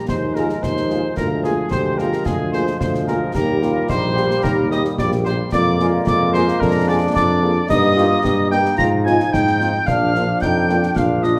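Marching in a straight 2/4 at 110 BPM, this rousing, proud military-style wind band march fragment has a distant, roomy cornet carrying the melody with light vibrato over a tuba bass that sits up front, while concert snare drum, concert bass drum and dark clash cymbals keep time close and dry. The second lines belong to a clear euphonium, a pure, tongued and expressive piccolo with vibrato, and a tight woodwind section in the background, as a bright trombone section holds sustained chords and a very quiet French horn section enters at 0.4 seconds to fill out the accompaniment. The harmony moves from Fm7/Eb through Bb7/D to Eb and arrives on Bb at 9.9 seconds, all set in a wet, large studio reverb with a classical, warm band sound.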